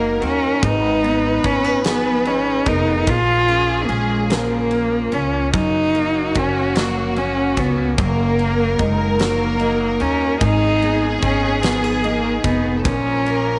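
A six-eight pop ballad in E-flat minor at a slow 49 BPM, this dramatic, melancholic passage is cut from a longer piece. Up front, a single close-miked cello carries the melody with vibrato, portamento and a soft, expressive bowed attack, while a smooth, even studio violin section traces a second line above it. Beneath them, a fingerpicked steel-string acoustic guitar sits in the background with fresh strings and the occasional finger squeak. A very quiet, bright electric guitar, recorded direct, adds clean, compressed, twangy arpeggios. A woody pizzicato upright bass anchors the low end, and a huge arena drum kit, entering at 0.2 seconds, brings a punchy kick, fat snare and ride cymbal in a big-room sound. Light studio reverb rounds out the sound as the chords cycle from E-flat minor over G-flat through A-flat minor, B-flat minor and G-flat.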